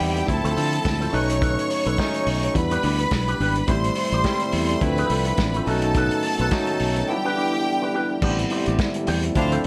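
A swung sixteenth-note disco groove in 4/4 drives this danceable passage from a longer piece, anchored by a muffled, lo-fi vintage drum kit with dark cymbals and a tight kick, and a growly, up-front fingered electric bass. A barky, lightly overdriven tine electric piano and a twangy, picked electric guitar through an envelope filter fill in the accompaniment, while a clear, intense string section with vibrato carries the second line up front. At 3.7 seconds a mellow French horn section joins in the background with sustained chords over a Dm7, B7, Em7, Am7 cycle, heard in a small room with light reverb.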